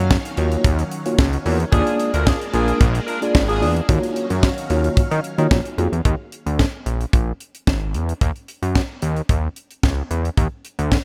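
A swirling, bright string machine with chorus and phaser sits in the background as it opens this danceable, late-night excerpt of early-eighties boogie funk in Eb minor at 111 BPM, alongside a fat, saturated sawtooth bass with a filter pluck. The bass sits up front with a tight, dry drum kit (high-tuned snare, tight kick, hi-hat), and a mellow, clean tine electric piano comps on Ebm9 and Bb7. A warm, tight horn section with vibrato plays a short second line from 1.7 to 3.7 seconds, and the strings and electric piano stop around 6.0 seconds. From there the bass and airy, polished drums carry the groove through Bb7 and Ebm7 to a chordless passage, all in a light, small-room ambience.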